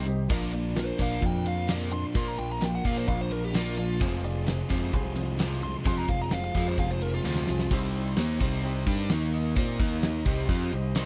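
This classic rock excerpt has a driving, swaggering feel in a straight 4/4, cut from a longer piece and captured with a dry, close 1970s-style studio sound in a small room. A huge arena drum kit sits up front with a punchy kick, fat snare and bright cymbals, alongside a growling, overdriven electric bass that is also forward in the mix, while a very quiet tambourine adds a jingly touch. Two double-tracked guitars carry the riff: an overdriven, compressed electric part and a thick fuzz guitar tucked into the background. A biting lead guitar, bright with overdrive and tape echo, plays a solo until 7.7 seconds, when a drum fill leads into a new section. Beneath it, a woody upright piano and a very quiet tonewheel organ with key click and vibrato fill out the harmony, and a shimmering, octave-doubled twelve-string acoustic guitar with audible finger squeak drops out at 7.7 seconds. The piano closes with a brief fill at 10.7 seconds.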